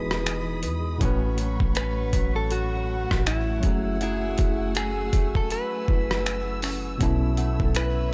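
Contemporary R&B at a moody, late-night 80 BPM with a swung 16th feel in F# dorian, built on a gritty, overdriven sampler-style drum kit of thumpy kick, hi-hat, rim click and finger snaps sitting up front, a deep, round 808-style bass, a worn, slightly out-of-tune tine electric piano with light overdrive, a boxy parlour steel-string acoustic guitar fingerpicking arpeggios, and a string section with vibrato, portamento and sidechain pumping holding chords, while a clean, direct-recorded electric guitar carries the melody through delay and a pure FM synth bell with chorus and delay glimmers in the background over Emaj7, A69, F#m9 and B9sus4 in this short excerpt.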